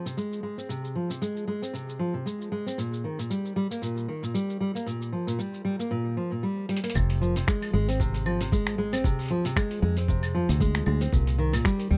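A fingerpicked steel-string acoustic guitar opens this intimate, wistful folktronica piece, its woody arpeggios on old strings sitting up front, softened by a low-pass filter and trailed by tape echo. Almost at once, a lo-fi sampler-style kit of claves, finger snaps, hi-hat and shaker joins beneath it, muffled, compressed and tape-warm, with the character of a small room, moving in a gently swung 4/4. After a drum fill at 6.7 seconds, a round, dark fingered electric bass with a foam-muted tone arrives at 7.0 seconds alongside a thumpy electronic kick. The harmony moves from Fm through Dm7b5 and comes to rest on Cm7 near the close. It is a dry, close recording with a 1970s studio feel, cut from a longer piece.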